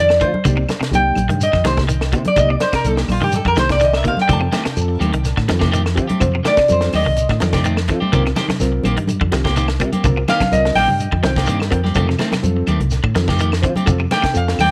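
A lap resonator guitar carries the melody from the very start of this joyful, funky afrobeat excerpt, its metallic, nasal slide tone played with fingerpicks and a steel bar, sitting up front with tape echo as it solos between F4 and A5 in F mixolydian. Beneath it, a bright, picked clean electric guitar spins low arpeggios in the background while a round, punchy fingered electric bass anchors the groove at 125 BPM in a straight 4/4. A tight funk drum kit with a high-tuned snare and tight kick drives the beat, ringed by woody claves, a grainy shekere and ringing, softly played congas tucked behind it. A reedy electric piano adds lightly overdriven accompaniment with a medium tremolo, and a second clean electric guitar enters at 4.3 seconds with picked stabs. The harmony alternates between Cm7 and F9, and the lap guitar's lines come in fragments after 7.4 seconds, all set in a small room with light reverb.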